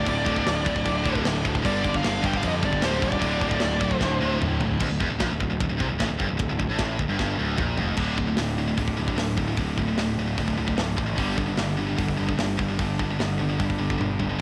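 A straight 4/4 pulse at 151 BPM drives this dark, epic heavy metal fragment, cut from a longer piece and recorded at home on cassette with little reverb, where a tight, up-front acoustic drum kit with a gritty, rolled-off top and fills at 4.0, 7.2 and 14.0 seconds backs a growly fuzz bass, a bright high-gain guitar riff, an overdriven background guitar and a very quiet double-tracked distorted guitar that drops out between 4.8 and 8.0 seconds, while a dark, smooth overdriven lead guitar with tape echo plays a short melody over the opening 4.4 seconds as the chords move from D5 and G5 through Dm.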